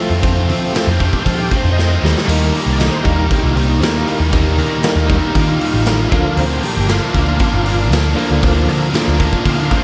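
A thick tonewheel organ takes the lead from the first moment of this brief classic rock passage, its slow rotary speaker, chorus vibrato, light overdrive and audible key click colouring sustained chords as it solos throughout. Alongside it, a sludgy, double-tracked distorted guitar picks out a riff, while a dark, jumbo steel-string acoustic guitar plays very quietly underneath, finger squeaks and all. A round, amped electric bass and a raw garage drum kit follow within a fraction of a second, the kit gritty and up front, with a boomy kick, medium-tuned snare, hi-hat and splash cymbal ringing in a bright, pumping stone room. A drum fill at 1.8 seconds leads into the arrival of a second, crunchy overdriven guitar riff at 2.2 seconds, sitting further back in the mix. At a straight 117 BPM in 4/4, the harmony moves from F to Eb to Bb under light reverb, giving the passage a driving, brooding character.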